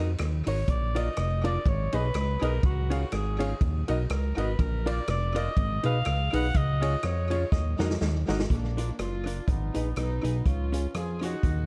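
This mischievous, energetic ska piece opens with a clean, hollow-body archtop guitar in accompaniment and a fat, up-front analog bass, in Eb minor at 123 BPM with swung eighths. A vintage acoustic drum kit joins almost at once, with dark cymbals, a punchy kick, a medium-tuned snare and a touch of tape echo. Over it, a bright alto saxophone with light vibrato and its own tape echo carries the solo melody, while a woody, slightly detuned upright piano with audible action noise adds stabs in the background. After a drum fill, a warm horn section takes over the melody at 8.5 seconds as the chords keep cycling through Ebm, Bb, Abm and Db. The production is dark and dry, with little reverb and a layer of vinyl crackle.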